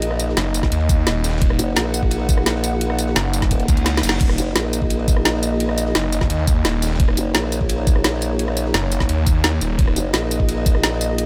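This dark, technical drum and bass excerpt drives at 172 BPM in Eb minor with an aggressive, mechanical mood and a straight feel. It opens on an Eb5 chord with a deep, moody analog pad holding slow-attack chords under chorus and sidechain pumping, while a formant-sweep wobble bass wobbles up front through its own chorus. Two drum kits run together from the start: an up-front electronic kit with a woody snare, bright hats, crash, rim click and tambourine, and a gritty, saturated acoustic breakbeat kit with dark cymbals and a high-tuned snare, high-pass filtered and sitting in the background. At 0.4 seconds a snarling, growling sawtooth bass bursts in, distorted and tube-saturated with a moving notch, and a tape-toned, knocking electronic kick follows at 0.6 seconds. Around 3.7 seconds a very quiet reverse cymbal swells, joined at 3.9 seconds by a short drum fill. Light reverb rounds out the mix.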